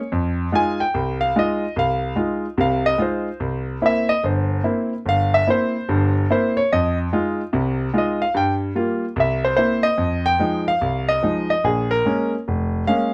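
A clear concert grand piano plays solo jazz with a cool, late-night mood, its swung lines and chords sitting up front with deep bass and short sustain under light reverb and close, detailed microphones, moving from minor harmony into a new section at 10.0 seconds in this short cut from a longer piece.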